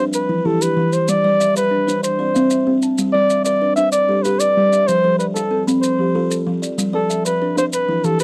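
A mellow, up-front flugelhorn with light vibrato sings a jazz-tinged melody over two interlocking kalimbas, one buzzing and hollow-boxed with a soft, dark tone and the other ringing and airy, while grainy maracas join at 0.1 seconds in this warm, rippling southern African traditional cycle in G mixolydian, moving at 126 BPM in 12/8 through a dry, close 1970s-style studio sound, cut from a longer piece.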